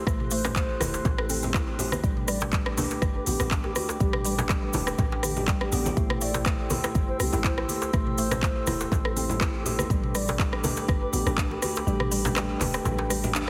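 A swung 122 BPM afro house groove in 4/4 drives this hypnotic, warm excerpt, built on a deep electronic kick, an up-front afro-pop kit of handclaps, smooth hi-hat, rim click and toms, and a background bed of ringing congas, tight, cracking djembe and grainy, bright cabasa. Underneath, a boomy, sine-like 808-style bass with tube saturation pumps against the kick. The harmony moves between Am7 and Gadd9, carried by a moody, detuned analog pad with slow attack and long release, soft tonewheel organ stabs through a slow rotary speaker with delay, and woody, warbling FM mallet-like plucks playing arpeggios. Drifting in the background, a hollow bamboo bass bansuri adds a pure, vibrato-tinged melody, roughened by vintage 12-bit sampler grit and delay. The kick drops away around 11.5 s, and the whole track has a heavily compressed, radio-like sheen over light studio ambience.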